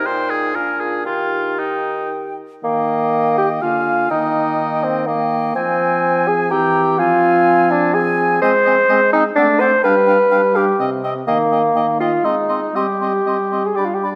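Stormy and restless, this quick classical-period movement for wind quintet in 3/4 moves at 113-128 BPM with a rubato feel, starting in Eb major and turning to C minor from 8.4 s. A hollow, pure-toned silver flute carries the melody with vibrato from the background, a warm oboe sings the second line, and a smooth-topped French horn and distant, roomy clarinet fill in the accompaniment. An up-front bassoon with light vibrato and a vintage colour anchors the bass, all set in a moderate scoring-stage reverb in this brief cut from a longer piece.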